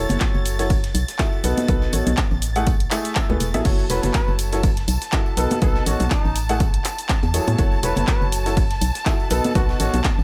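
A growling trumpet with a dark, raspy tone enters at 3.9 seconds and carries a distant, roomy jazz-style solo with delay over this energetic, bittersweet piano house groove at 122 BPM, swung on the sixteenths in F# dorian. Underneath, a clear, woody upright piano plays a slightly detuned riff with long sustain, roughened by vintage 12-bit sampler grit and echoed by delay, while a lush symphonic violin section holds smooth, vibrato-rich chords high above. An organ-like FM bass with a hollow, percussive attack anchors the low end, and it breathes with sidechain pumping along with the piano and strings. A punchy, tape-toned electronic kick sits up front, joined by a layered garage kit of cabasa, crash, handclaps and hi-hat, background congas and tambourine struck with hard hands, and a very quiet, compressed breakbeat kit adding hi-hat and snare. The harmony cycles through F#m7, B7 and Amaj7, all in a small room reverb, in a short cut from a longer piece.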